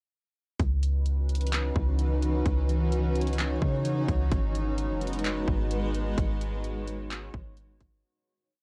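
A trap drum kit and a soft 808-style bass arrive together at 0.6 seconds: a sparse half-time beat with a hard-clipped, overdriven kick, handclaps and bright hi-hats with fast rolls, under long, round sub-bass notes that follow the kick and slide in pitch. At 1.2 seconds a cloudy granular pad enters with slow-attack sustained chords, blurred by its own reverb and pumping from sidechain, moving from C#m11 to G#m7 in this melancholic, spacious cloud-rap piece in G# minor at 129 BPM, tuned to A4 = 435 Hz. The sound is dry and gritty with transformer and cassette-tape saturation, and the whole piece fades out from 6.2 to 8.0 seconds.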